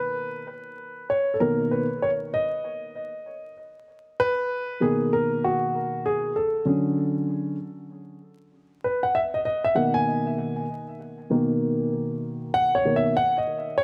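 A dark concert grand piano carries this cool, relaxed hip hop excerpt on its own from start to finish, sitting up front with a mellow tone, a deep bass and a short sustain. Its playing spans B2 to G#5 and has a gentle swing on the sixteenth notes, while an analog delay trails behind it. The harmony rests on a Bmaj7, moves to Dmaj7 at 6.4 seconds, and returns to Bmaj7 at 8.8 seconds, with a new section starting at 3.9 seconds. A moderate plate reverb adds space, and a layer of vinyl crackle colours the shadowy, warm production.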